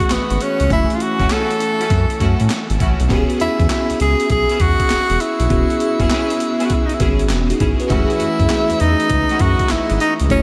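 A breathy tenor saxophone sits up front, carrying the melody with a soft attack, scooped notes and jazz-style vibrato across this bouncy, upbeat slice of new jack swing R&B. Beneath it, a bell-like tine electric piano treated with ensemble chorus plays the chords, moving from F#m7 to E6 at 3.1 seconds and back to F#m7 at 7.9 seconds. A gritty, sampler-style breakbeat kit, compressed and tape-toned, drives the swung sixteenth-note feel with a thumpy kick, medium-tuned snare, hi-hat and handclaps. A round, deep analog bass with a fast attack and evolving, sustained tone enters at 0.1 seconds, and a lush bowed string section with delay adds bright stabs in the background from 1.2 to 9.4 seconds. The whole mix is soaked in a huge ambient reverb that gives this fragment of a longer piece a dreamy glow.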